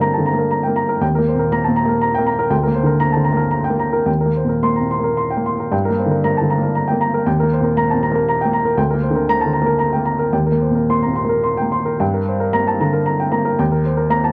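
In a loose, rubato three-beat lilt, this wistful, intimate neoclassical minimalist piano piece, cut from a longer work, sets a solo baby grand with a warm, worn tone and short sustain up front in a dry, close 1970s-style studio sound, circling through a repeating chord cycle that begins its phrase again at 12.0 s.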